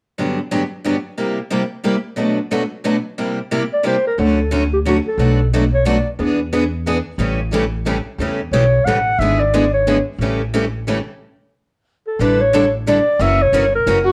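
Two picked steel-string acoustic guitars open this charming, lively fragment of swinging jazz manouche in three-time at 0.2 seconds: one bright and up front, the other a fresh-strung parlour guitar sitting in the background. A mellow clarinet with light vibrato joins at 3.7 seconds and carries the melody in short, punchy jazz-style solo phrases. Pizzicato upright bass on gut strings enters at 4.2 seconds, woody and thumpy near the front. The chords move through major-seventh and dominant colours, with a brief stop before a suspended chord leads into the closing stretch. In the final instant a single bowed violin appears, dark with a smooth top. The whole recording carries the worn, warbling pitch drift of old cassette tape, set in a moderate studio reverb.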